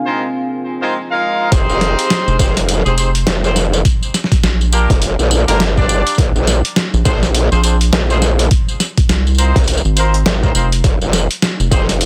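Glitch hop at 103 BPM in F dorian with a swaggering, gritty mood: this excerpt opens on a moody analog pad and a deep, reverb-washed ambient pad in the background, both chorused and pumping, while vintage horn stabs with octave doubling and tape echo begin at 0.1 s. The drop at 1.5 s brings in a growling, distorted wobble bass alongside a compressed, pitched-down, tape-warm sampler-style kit of hi-hat, snare and tambourine and a thumpy electronic kick, with a rubbery, hollow square bass joining at 2.3 s. Dense limiting and a low-pass filter keep the dry mix tight as the chords move from Fm7 through Gm7, Bb7 and Ab6 to F5.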